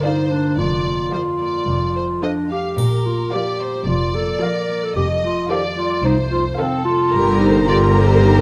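A straight 4/4 pulse drives this playful, whimsical film cue, cut from a longer piece, with a quirky, magical air. A lush, expressive violin section carries the melody while a vintage-toned clarinet sits up front on a second line beside another violin section, a focused viola section supplies accompaniment, and a mellow concert harp rings out fingerpicked arpeggios. At 0.6 seconds a smooth double bass section and a background cello section enter on the bass, a triangle adds a bright touch from 2.8 to 3.8 seconds, and light reverb with close, detailed microphones frames the bowed strings.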